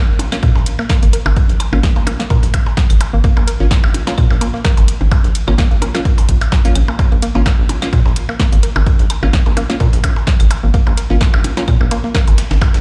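Heard through a big sound system in a bare room with a large studio reverb, this cool, clinical minimal techno cut in Bb minor runs at 128 BPM with a light 16th-note swing, built on an up-front overdriven electronic kick and a dark, rubbery square bass that pumps under sidechain and tube saturation, while a punchy layered techno kit with tape-toned hats, a gritty, compressed breakbeat sampler-style kit of ride and high-passed snare sitting in the background, and electronic percussion blips and claves in dub echo fill out the groove, as a hollow, detuned, wave-folded square pluck riff with chorus and digital delay enters at 0.8 s and a crisp, warbling wavetable chord stab with a moving notch drifts behind in dub echo until 11.6 s.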